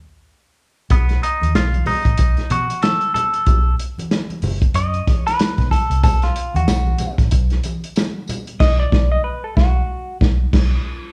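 Gritty and strutting, this funk groove sits at 94 BPM in 4/4 with a swung sixteenth-note feel, holding on a B7 chord in B mixolydian after a brief opening break. At 0.9 seconds the band comes in together, led by a clean, compressed semi-hollow electric guitar run through a wah, its hollow-body tone placed up front as it takes a solo in the middle register. Beneath it, a foam-muted fingered electric bass gives a round, punchy, amped low end, while a soul drum kit of kick, snare, hi-hat and crash sounds dry and muffled, with dark cymbals, a tight kick and a lo-fi, rolled-off top roughened by vintage 12-bit sampler grit. Ringing, medium-tuned congas add color until 8.5 seconds, joined from 6.0 seconds by a jingly, band-limited tambourine tucked in the background. The band hits accents from 8.6 seconds toward the close of this excerpt, all heard as a live group in one room bathed in a large, wet studio reverb.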